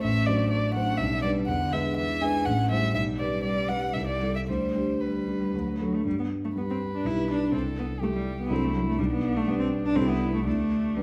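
A close, warm-toned solo violin carries the melody up front, bowed smoothly and evenly with vibrato. Beneath it, a single cello plays a rich, focused second line, its bowed tone rounded at the top and shaded with vibrato of its own. A dark, mellow concert grand supplies the accompaniment, also placed up front, with deep bass anchoring the trio. This lively, spirited classical-period movement moves in a quick triple metre with a flexible, rubato feel. The harmony turns through dominant-seventh and minor-seventh colours before a new section begins at 6.1 seconds, settling back onto the home chord. All three players sound throughout this brief passage cut from a longer piece, set in a moderate recital-hall reverb with the natural air of a church or concert hall.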